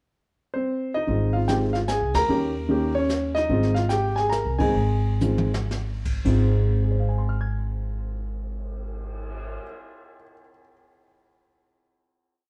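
Warm and sophisticated, this short, complete jazz piano trio piece moves in a swung 3/4 in Ab major, with a tempo that ranges from 104 to 150 BPM. The concert grand piano opens alone at 0.5 seconds with a pickup, and the upright bass and brushed drum kit join at 1.1 seconds. The piano carries a motif-based melody of call phrases, partly doubled in octaves, over syncopated comping in drop2 voicings; its tone has a deep bass and short sustain, sits up front, and is touched with plate reverb. The woody, pizzicato upright bass plays a two-feel line on steel strings, while the drums stay lower in the mix with brush sweeps on the snare, dusky cymbals, a boomy kick and a rolled-off top. The band hits shared accents, slows down through the middle, and the drums play a brief fill before the trio settles onto a final chord at 6.3 seconds. The whole piece sits in a moderate large studio space with a dark, warm production.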